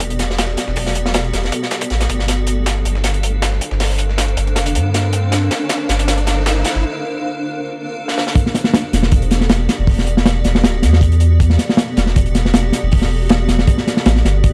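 A crunchy, saturated breakbeat with a tight kick and rolled-off top drives this dark, nostalgic drum and bass and jungle fragment, joined by a very quiet, tape-warm soul sampler-style kit until 6.8 s, a deep, round dub sub bass up front, a cloudy, blurred granular pad moving between Em11 and Gm11 with built-in reverb and 12-bit grit, and a background electronic riser from 3.4 s, building through drum fills and a short break into the drop at 8.4 s under a veil of vinyl crackle.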